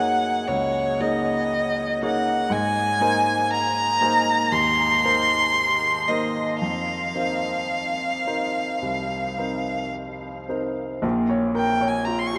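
Classical impressionist duo in a rubato feel, mysterious and wistful, where a rich, smooth bowed violin with vibrato carries the melody up front over an intimate baby grand piano accompaniment with audible action noise, both bathed in a huge, echoing reverb that suggests a vast space, in this piece cut from a longer work.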